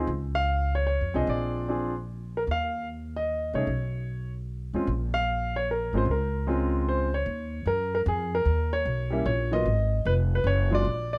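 A swung waltz feel in 3/4 carries this moody, swinging jazz fragment, taken from a longer piece, with a smooth, vintage-toned grand piano playing the melody under plate reverb beside a woody, growly pizzicato upright bass, both placed up front for the full 11.2 seconds. The piano's warm lines move over rich minor-ninth and suspended harmonies, and at 7.3 s the music shifts into a new section with a new tonal centre, ending on an open, bare chord. A light room reverb surrounds the pair.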